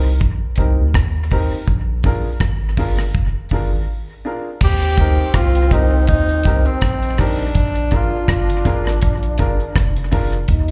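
Captured live through a club's PA system, this roots reggae excerpt carries a dry, close sound with just a touch of room reverb, and a sunny, laid-back mood over a swung groove. A deep, round dub sub bass sits up front with a soft, sustained tone, while the acoustic drum kit stays dry and smooth, built from a tight kick, hi-hat, rim clicks and crash cymbal. A dark upright piano adds short, woody stabs colored by slapback echo, moving between Eb6 and Bb7 chords. After a brief break at 3.9 seconds, a breathy, close-miked tenor saxophone enters at 4.6 seconds with a whispered, intimate melody soaked in dub and slapback echo, playing until 9.0 seconds. Beneath it, a mellow trombone with vibrato carries a soft second line in the background, sharing the same echoes through to the end.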